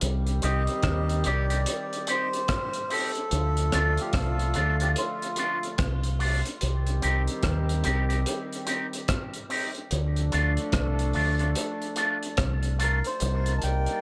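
A slow, swung dub reggae groove at 73 BPM in 4/4 is driven by a muffled, cloth-damped drum kit of kick, hi-hat and rim click, with a deep, round fingered electric bass sitting up front as the harmony rocks between Cm and Dm. A twangy electric guitar with an envelope filter and a distant horn section in octave doubling both trail dub echo, while a reedy, breathy melodica with its own echo carries the melody from 0.4 to 5.8 seconds and returns at 12.8 seconds. The mood is heavy and spacious, set in a small room with light reverb, in this excerpt from a longer piece.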